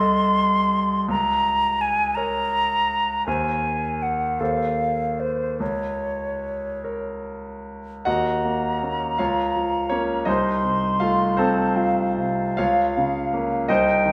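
A hollow, vibrato-tinged flute and a bright grand piano with deep bass begin together in this elegiac romantic duo, the flute carrying a pure, tongued melody over the piano's polished accompaniment. The solemn music moves in a compound metre with flexible rubato, and its opening phrase returns at 8.1 seconds. Both instruments sit up front in a reverberant stone room, and the excerpt is cut from a longer piece.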